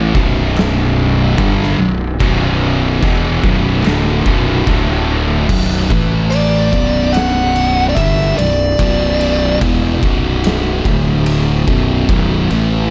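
Brooding and sludgy, this stoner and doom metal excerpt crawls at 73 BPM in B minor, with a thick, double-tracked fuzz guitar riff up front, a second distorted guitar tucked into the background until 5.5 seconds, a growly, overdriven fingered bass, and an oversized low-tuned acoustic kit of fat snare, punchy kick, crash and ride that sounds dark and gritty in a bright stone room, while a fuzz lead guitar melody steps forward from 6.3 to 9.6 seconds, all set in a small room ambience.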